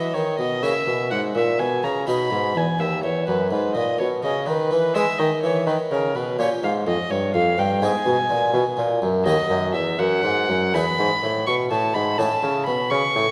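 A lilting 12/8 pulse at 83 BPM, shaped with rubato, carries this serene, dance-like baroque-style sonata excerpt, where a dark, nasal gut-string violin sings the melody over a brilliant, plucked harpsichord and a vibrato-rich bassoon bass, all up front in a reverberant concert hall, with the harmony settling into E major from 9.3 s.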